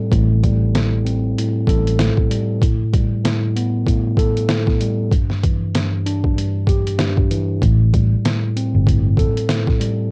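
Moody and dark, this short boom-bap hip-hop excerpt cut from a longer piece moves at 96 BPM in A minor with a swung sixteenth-note feel. A mellow tine electric piano carries the accompaniment from start to finish, clean and up front with a cassette-tape coloring, outlining Am7, Gadd9 and Em7 before returning to Am7 at 7.6 seconds. A sampler-style drum kit runs throughout, gritty and pitched down, with a thumpy kick, a medium-tuned snare and hi-hat, all compressed and sitting forward in the mix. A vintage muted fingered electric bass, round and foam-muted with transformer saturation, sounds only briefly at the opening and again from 7.6 seconds. Light reverb and the lo-fi character of a home cassette recording give the whole passage an intimate, dusty feel.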